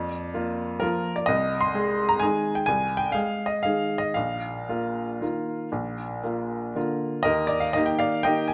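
Elegant and sparkling, this brief classical piano waltz in 3/4 moves with a rubato feel between 113 and 134 BPM, cut from a longer piece. A clear upright piano plays alone from 0.0 to 8.5 seconds, its woody, intimate tone caught by close, detailed microphones that bring out audible action noise and a long sustain across a range from Bb1 to C6. The harmony passes from Bb through Ab/C and Bbsus4 back to Bb before shifting to Eb as a new section opens at 7.3 seconds, all in a light reverb.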